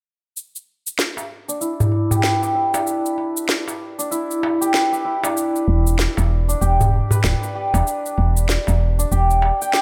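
A shimmering, hammered santur plays ringing arpeggios through a low-pass filter sweep and digital delay, giving this organic downtempo piece, cut from a longer work, a warm, mystical air over a single Em7 chord. Up front beside it, a crisp metal-shell darbuka played with soft hands and a sharp, produced electronic cabasa and snare drum bathed in studio reverb carry a swung 4/4 feel. A round, dark, woody FM bass with a fast attack and a decaying tone joins at 5.7 seconds.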